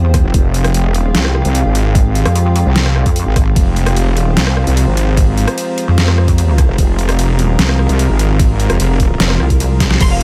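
A digitally ambient mix carries this aggressive, menacing heavy wobble dubstep cut at 149 BPM in a half-time feel in F minor, where a saturated, detuned sawtooth wobble bass and a pulsing, mellow pluck wobble bass sit up front over a knocking electronic kick and a drum kit with deep snare, bright hats, crash, ride and rim click, while an evolving, warbling wavetable pad and a soft, breathy pad pump in the background on an Fmadd9 chord, a drum fill lands at 9.8 seconds, and a lush bowed violin section with vibrato and portamento enters at 10.0 seconds.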